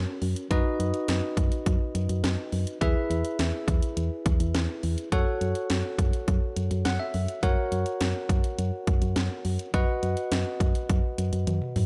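Synth-pop at 104 BPM in a straight 4/4, nostalgic yet bright, cut from a longer piece and moving through F#, B/F#, E and F#m. A bell-like tine electric piano carries the chords up front, with a short fill at 6.6 seconds, while a round, dark FM bass with a fast attack holds the low end. A punchy, overdriven house drum kit of hi-hat, kick, cracking snare and toms enters at 0.2 seconds, sounds layered and re-recorded in a large room, and closes with a drum fill at 11.5 seconds, all set in a digital ambience.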